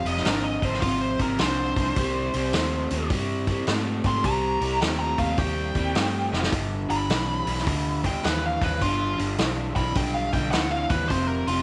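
Blues rock in the power-trio and southern rock mold, this heavy, gritty excerpt moves at 105 BPM in 4/4 with a swung eighth-note feel. A nasal lead guitar with a parked wah takes a dark, overdriven solo from the very start, picked high above the band. Beneath it, a crunchy, double-tracked rhythm guitar sits up front playing the riff, while a vintage muted fingered bass adds a round, punchy, foam-muted low end. The vintage acoustic drum kit is saturated and mid-forward, with a punchy kick, a medium-tuned snare and hi-hat, a rolled-off top, and a drum fill at 6.2 seconds. The harmony moves from F minor through C minor to G, landing on an F power chord near the end, all set in a small room with light reverb.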